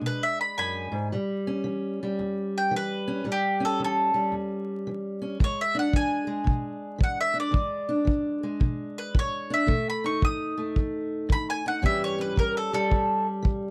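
A fingerpicked steel-string parlour guitar opens this short, swaggering cut of acoustic country blues, its boxy tone sitting up front under a bright, woody mandolin that carries the melody on doubled strings over a swung 4/4 and a progression moving through E7, A7 and B7. At 5.4 seconds a dark, punchy kick drum played with brushes joins, smooth and close, giving the rollicking groove more weight. The trio sits in a snug booth ambience with a layer of vinyl crackle, and the passage breaks off mid-piece at 13.7 seconds.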